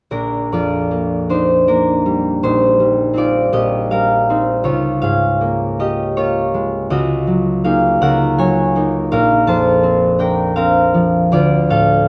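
A bright, ringing concert harp, fingerpicked and up front, plays alone from 0.1 to 12.1 seconds in this graceful, peaceful classical passage cut from a longer piece, drifting in a rubato 6/8 at 54 BPM in dotted quarters, tuned to A4 = 437 Hz, spanning Bb1 to A5 through chords from Bb6 and Db6 to Ab11/Db, Bbadd9 and Dm7, all bathed in the wet reverb of a recital hall.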